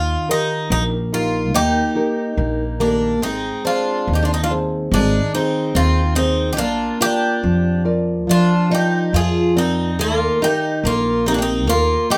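A bright, metallic Greek bouzouki carries the melody up front over a deep, full-bodied nylon-string guitar accompaniment and a woody, thumpy pizzicato upright bass, opening this tender, nostalgic fado-style ballad in Eb major at a rubato 71 BPM in 2/4. At 1.5 seconds a shimmering, octave-doubled twelve-string acoustic guitar enters with a picked second line, as the harmony moves from Eb through Ab and Bb and back to Eb. A wet studio reverb surrounds this brief excerpt, cut from a longer piece.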